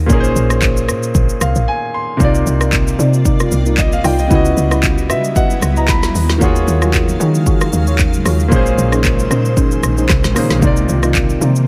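An up-front, produced afro-pop drum kit leads this hypnotic, soulful amapiano passage, cut from a longer piece, with a deep kick, woody snare, crisp hi-hats, handclaps, rim clicks and shaker riding a swung sixteenth-note feel. Beneath it, a round, percussive log drum bass with an FM tone and a noise layer strikes with a fast attack and decays mellowly. A clear, smooth concert grand piano with a vintage character and heavy low end carries the accompaniment, adding fills around 1.1 seconds and again at 4.8 seconds, the first of these landing in a short break. From 2.2 seconds, soft, dark chord stabs built from detuned triangle, sawtooth and sine tones sit in the background, shaped by a filter sweep, a moving notch, chorus, phaser and digital delay. A cloudy granular pad joins at 2.9 seconds, its blurred, full-bodied sine texture evolving, with a slow attack, long sustained chords and built-in reverb. 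Rich minor eleventh chords climb in steps from Bb to Eb, then return to Bb and C, all set in a digital ambience.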